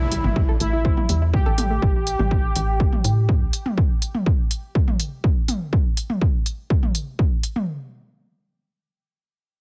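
Dark and dramatic, this short melodic techno cut opens with a very quiet electronic impact as a brassy, detuned analog synth brass line with chorus, delay and sidechain pumping rides over a tight, punchy sawtooth sequencer bass, joined at 0.1 seconds by a soft, round pluck playing arpeggios through chorus and tape echo. The brass, bass and pluck all drop out within the first 4 seconds, leaving a heavy, up-front electronic kick and a tape-toned techno drum kit with smooth hats and toms to carry on, the kick until 7.3 seconds and the kit until 7.7 seconds. The mix is dry and heavily compressed, with a radio-like squeeze.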